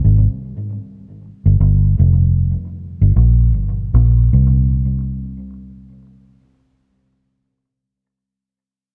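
A round, foam-muted vintage electric bass, played with the fingers, carries this short reggae fragment alone, sitting up front with an amped tone and a touch of tape echo. The mood is meditative and hypnotic, with a loping swung feel, and the line moves into a new section at 4.3 seconds before the clip ends at 8.1 seconds. The production is dark and dry, with little reverb around the bass.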